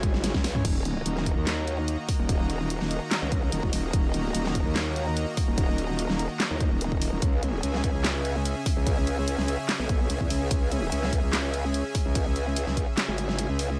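A growling, saturated wobble bass drives this chaotic, menacing heavy dubstep drop at 146 BPM in a half-time 4/4 feel, its formant-filtered sine tone thickened with chorus and overdrive as the harmony moves from Db minor to Eb minor and back. Up front beside it, a punchy electronic kick and a layered dubstep kit with a huge snare, hi-hat, handclaps, toms and crash cymbal open with a drum fill at 0.2 seconds, while a lush, bright supersaw pad of detuned sawtooth chords pumps underneath in a digital ambience. The kick drops out at 13.0 seconds, near the close of this section cut from a longer piece.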